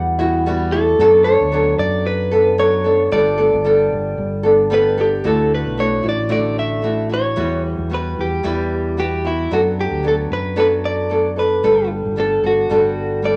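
A lightly swung sixteenth-note feel in 4/4 carries this sunny, carefree acoustic pop passage, cut from a longer piece, as a bright, fingerpicked nylon-string guitar sits up front, moving through chords such as Emadd9, Bm7 and Gadd9. A clean, compressed electric guitar, picked and recorded direct, carries the melody with cassette tape grit and tape echo, while a dark, round, punchy fingered electric bass adds transformer saturation underneath. The homemade cassette sound, with small room ambience and light reverb, shifts to a new section at 5.2 seconds that opens on Dadd9.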